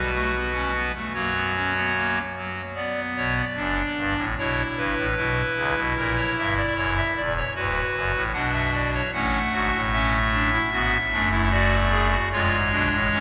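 A wet cathedral acoustic fills this recording, with a reverb tail of about 6.4 seconds that lets each note hang in the air of the vast space. It is a classical, baroque-style fugue in four parts for pipe organ, cut from a longer piece, and its mood is lively and joyful over a straight 4/4 pulse. The organ plays solo throughout on a clarinet reed stop, a hollow, romantically voiced sound placed up front, and its range reaches from a deep D1 up to F#5. The opening hovers on an F#sus4/B chord that settles onto F#, and at 2.8 seconds a new section begins that moves through Bm, C#m7b5, F#7 and G#m7b5 before arriving on C#7/E# at 12.3 seconds. The reedy solo voice set against that long cathedral decay gives the counterpoint a singing, festive glow.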